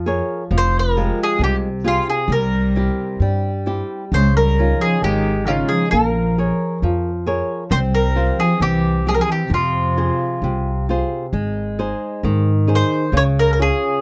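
A bright, picked mandolin with double strings carries the longing, passionate melody up front in this rubato fado-style ballad, over fingerpicked flamenco guitar with fresh strings and a dark, thumpy pizzicato upright bass on gut strings, while a single bowed cello adds a warm, floating sul tasto second line from 2.3 to 10.8 seconds, captured with close, detailed microphones and little reverb in a passage cut from a longer piece.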